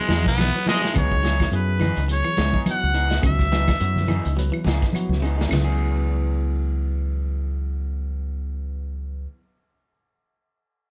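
Afrobeat with a funky, intense drive, this short cut from a longer piece moves with a light sixteenth-note swing over a minor-key vamp. A raspy, forceful baritone saxophone opens with a brief, scooped solo phrase touched by slapback echo, and a bright trumpet takes over the lead from 0.7 seconds, sitting up front with a present, pop-style tone. Underneath, a round, punchy fingered electric bass anchors the groove up front, while a crunchy breakbeat drum kit with a tight kick, dark cymbals and a gritty, rolled-off top plays a fill before the main section settles in. Thick-skinned, damped congas and woody claves sit in the background, along with a twangy guitar playing arpeggios at the edge of break-up. A lo-fi guitar through a small old amp adds picked stabs with its own slapback echo, and a bell-like tine electric piano rings cleanly behind everything. The drums, percussion and arpeggiating guitar stop at 5.7 seconds, leaving bass, stabs and electric piano to carry a closing passage that shifts to a simpler minor seventh chord, all in a light reverb.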